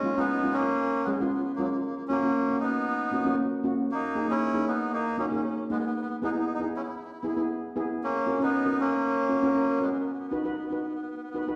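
Festive and bouncy, this short calypso passage is cut from a longer piece and moves at 117 BPM in a straight 4/4, tuned slightly low with A4 at 436 Hz. A reedy, breathy melodica carries the melody from F#3 to E4, its nasal, plastic-cased tone sitting up front. Alongside it, a steel pan of cello pans struck with soft rubber sticks provides the accompaniment, shimmering and mellow with a boxy, small-room character. Both parts play together from the start through about 11.5 seconds, over a chord sequence that runs C#7, F#, G#sus2, E, F# and B. A wet recital hall reverb with a 1.4-second decay surrounds the pair, and the listener seems placed further back in the room.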